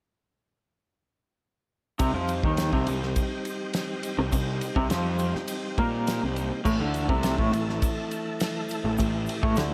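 Psychedelic rock with a dark, trippy mood, this short passage cut from a longer piece moves at 103 BPM in a straight 4/4, every part entering together at 2.0 seconds. A guitar through a small old amp plays a slightly broken-up, lo-fi riff with tremolo, while a fuzz-soaked picked bass gives a punchy, overdriven low end. A tonewheel organ holds smooth, clean sustained chords colored by chorus vibrato and a fast rotary speaker. The damped 70s drum kit sits up front with a fat snare, tight kick and dark crash and ride cymbals, and a grainy egg shaker ticks away in the background. The harmony moves from C minor to an A power chord at 6.7 seconds, and the whole dreamy mix is bathed in a moderate church reverb.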